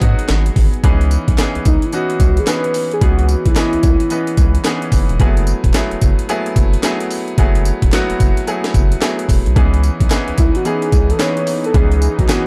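At 0.0 seconds, much is already in motion: a gritty, compressed breakbeat kit with a thumpy kick and high-tuned snare sits up front, a round analog bass thrums deep in the background, and a clear, polished baby grand piano comps through a C# minor progression in this bouncy, punchy new jack swing groove at 110 BPM. The swung sixteenths give the hi-hat, tambourine and snare a loose R&B strut. A velvety synth lead carries the melody with chorus, delay and a mellow vibrato, dropping out at 4.9 seconds and returning at 10.4 seconds. A smooth, warbling vintage pad with chorus colors the opening moment and comes back near the close. A very quiet, hollow group handclap sounds distant, as if from a large room. The production is dark and enveloped in digital ambience, and the piece is cut from a longer work.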